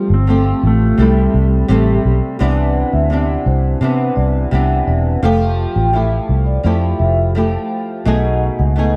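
Sunny and dreamy, this indie pop excerpt opens with a dark, clean electric guitar melody that lasts only until 2.0 seconds, set against a fingerpicked flamenco guitar, up front and treated with analog chorus and vibrato, and a round, foam-muted vintage bass that sits forward in the mix. At 2.4 seconds a soft-mallet vibraphone enters in the background, ringing and band-limited with slow motor vibrato, adding a second line over lush chords that drift from Cmaj9 to Fmaj9 and on to B13. The dark production is bathed in moderate spring reverb and small-room ambience.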